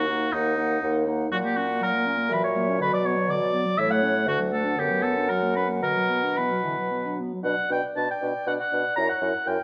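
A lively, spirited excerpt from a quick classical-period wind quintet movement in 3/4 opens with all five players together: an up-front oboe with light vibrato carries the second line alongside an airy, tongued flute melody set back in the background, while a mellow French horn and a clarinet fill the accompaniment over a soft-attack bassoon bass, all with rubato phrasing in a moderate recital-hall reverb captured by close, detailed microphones, before a new section begins at 7.4 seconds.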